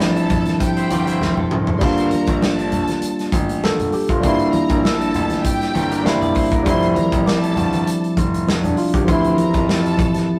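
A rough rehearsal-room recording with stone-room reverb and a saturated glow frames this bittersweet, cinematic slice of lush 1970s-style soul, lightly swung in 4/4 over ninth chords. A barky, lightly overdriven electric piano sits up front beside a punchy acoustic drum kit, while a clear grand piano with audible action noise carries the deep bass line, low-tuned congas murmur very quietly, and a dark violin section sings with vibrato and portamento. A twangy, slightly broken-up electric guitar riff appears at 0.6 and 5.7 seconds, a drum fill lands at 1.2 seconds, and a delicate, bell-like celesta rings softly in the background.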